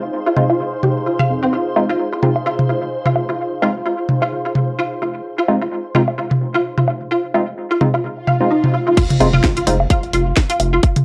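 A swung 129 BPM pulse in 4/4 drives this quirky, clinical minimal techno cut from a longer piece, sitting on a single F minor seventh chord through its opening stretch. A round, deep analog bass pumps with the sidechain from the very beginning, while a flickering, grainy texture and a warbling, nostalgic tape-like pad, the latter tucked in the background, hover with reverb and a lo-fi cassette haze. A squelchy, resonant blip pluck riff with detuned chorus and analog delay soon enters, followed by up-front electronic toms and woodblock carrying the groove alongside crisp, full-bodied wavetable chord stabs that are also touched by delay. A very quiet electronic swell rises from 8.2 seconds into a drop at 9.0 seconds, where the chord falls away, the pad and grainy texture stop, and a tight, layered kick arrives with a garage kit of cracking snare, warm hats and crash cymbal. The mix has a moderate room reverb and the softened, homespun character of a cassette recording.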